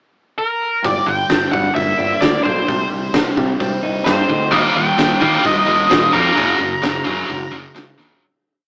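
A straight 4/4 pulse at 130 BPM drives this short, angsty and brooding quiet-loud alternative rock piece, where a dark octave-fuzz lead guitar enters at 0.4 s with a motif-based melody in period phrases, soaked in distortion and tape echo, before a twangy, slightly broken-up guitar through a small old amp adds picked arpeggios over Gm and Cm until 4.5 s. Beneath them a growling fingered bass, overdriven and driving in eighth notes, joins an oversized low-tuned drum kit with a fat snare and punchy kick pumping in a bright stone room, playing a big rock groove. At 4.5 s a scooped high-gain guitar comes in with palm-muted eighth-note riffing through D# and F#, and the whole pre-chorus sits in a rough rehearsal-room sound with tube saturation and an AM radio tint, fading out from 6.4 s, with a drum fill at 8.0 s.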